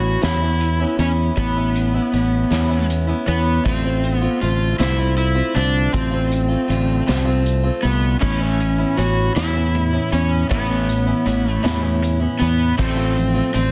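Hopeful and warm, this short folk rock and heartland rock passage in a straight 6/8 sets a dark, overdriven slide guitar up front on the melody, over a woody, boxy archtop acoustic with old strings and a bright, direct fingered electric bass, while an airy drum kit played with bundle sticks, with a high-tuned snare and tight kick, joins at 0.2 seconds. At 8.2 seconds a dark, double-tracked overdriven electric guitar slips in behind with a compressed riff, as the harmony moves between Aadd9 and F6/A. The mix carries light reverb and small room ambience under a dense, heavily limited modern master.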